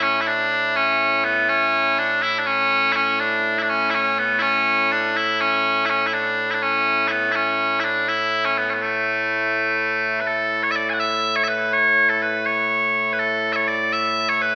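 Scottish traditional pipe music in a proud, ceremonial 6/8, played by solo bagpipes whose bright, piercing, continuous tone sits up front in a lush recital-hall reverb, moving into a new section at 10.3 seconds before this fragment of a longer piece is cut off at 14.6 seconds.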